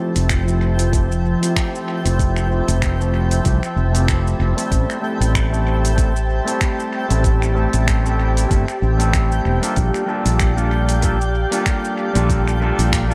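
In an echo-heavy mix with light reverb, this relaxed sunset chillout excerpt drifts over Fmaj7, Am7 and Gm7/Bb with a swung feel: a twangy, slightly broken-up electric guitar with dub echo sweeps through a low-pass filter, a thick, detuned unison pad warbles under chorus, a sparkling granular texture twinkles in the background, an up-front fretless electric bass glows with lush chorus, and a smooth R&B kit of finger snaps, metallic hi-hat and shaker with tape echo enters at 0.2 seconds, joined by a soft electronic kick from 0.3 seconds.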